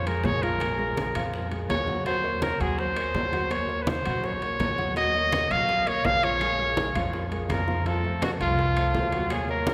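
Bathed in a long church reverb, this sophisticated, driving Afro-Cuban jazz excerpt in Bb minor at 166 BPM puts a clear, punchy trumpet up front with light vibrato and scooped notes over a growly, woody pizzicato upright bass and a natural-sounding concert grand piano accompanying through Bbm7, Ebm9 and F7b9, while low-tuned congas, metal-shelled timbales and tight, distant bongos sit in the background and barely audible claves join at 5.3 s.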